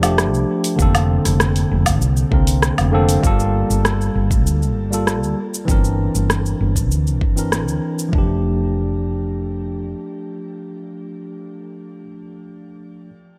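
Bright 1980s-style digital production with a moderate plate reverb frames this relaxed, warm sunset chillout excerpt in F major at 98 BPM, where a clean, bright tine electric piano, roughened by vintage 12-bit sampler grit and trailed by delay and shimmer reverb, voices chords like F69, Bbmaj9/F, Gm9 and C9/G over a growly, round, woody fretless bass that gets a filter sweep from 3.2 to 8.1 seconds, while a small-room deep house kit of cabasa, hi-hat, rim click and woodblock is joined at 0.8 seconds by a deep, layered electronic kick.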